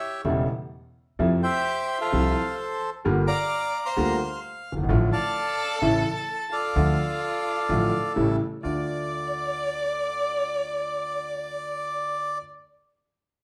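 A reedy, dark bandoneon carries the melody up front with a slapback echo while a single warm bowed violin sings a second line with vibrato and portamento, as a clear, vintage concert grand piano with deep bass and a woody pizzicato upright bass join at 0.2 seconds in this tense, passionate D minor tango fragment at 129 BPM with a rubato feel; the band plays live in one room with moderate large studio reverb, and the bass drops out at 8.8 seconds, just after the music moves into a new section at 8.6 seconds.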